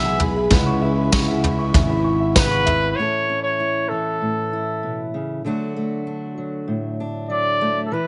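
This indie folk excerpt builds with a warm, uplifting mood at an easygoing straight pace, a classical-style trumpet carrying the melody from start to finish with a distant, roomy tone that still sits up front. For the first 3.0 seconds a full band surrounds it: a shimmering, octave-doubled twelve-string acoustic guitar with a boxy, dark character, a very quiet concert grand with deep bass, a woody upright piano playing mellow arpeggios with long sustain, and a bowed string section in the background, expressive with vibrato and portamento. Underneath, a round picked electric bass and a vintage brush kit with a punchy kick and rolled-off top give the opening its pulse, while a jingly tambourine sparkles faintly from 1.1 to 2.5 seconds. At 3.0 seconds the texture thins to a fingerpicked steel-string acoustic guitar placed up front, supporting the trumpet alone as the chords move from A to D. 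The sound is intimate, with light reverb, a small room ambience and a softened high end.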